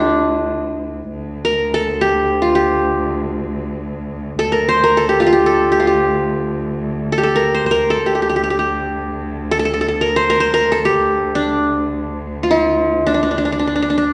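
Longing and hypnotic, this excerpt of an Arabic maqam ensemble piece unfolds in free time in D maqam bayati, tuned to A4 = 439 Hz. An up-front, bright-edged qanun carries the melody between D4 and C5 across the full 14.1 seconds, its triple strings plucked with a plectrum. Beneath it, a single distant bowed cello holds a smooth, even drone on D2 with vibrato, all set in a wet recital hall reverb heard from further back in the room.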